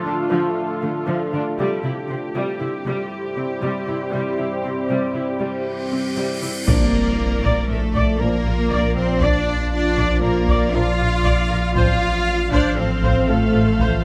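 A straight 5/4 pulse at 118 BPM drives this relentless, futuristic hybrid orchestral and electronic film score, where a smooth, distant viola section, an intense cello bass and a deep, moody, detuned pad with chorus and reverb build over Dm and C until a huge, bright cymbal swell crashes into an impact at 6.7 seconds, bringing in a focused, lush violin line, mellow background French horns, a background double bass section, a thick, saturated sub bass and very quiet, dry taiko hit with hard sticks, all over Bb and F/A in a close, detailed recording with light reverb.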